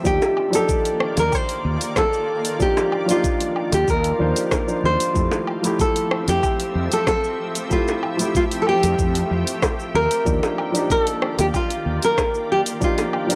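Relaxed and warm, this sunset chillout excerpt moves at 94 BPM in 4/4, drifting between Ebmaj9 and Fmaj9 chords. A fingerpicked nylon-string guitar carries the melody up front, its full-bodied tone roughened by 12-bit sampler grit and analog delay. A dark, mellow grand piano and a shimmering, ethereal pad with chorus and reverb fill out the harmony over a round, punchy fretless bass with tube saturation that stops at 12.0 s, while a knocking electronic kick, a smooth R&B kit of hats, rim click, shaker and woodblock, and tight, high-tuned bongos in the background keep a straight groove in a dry, gritty room.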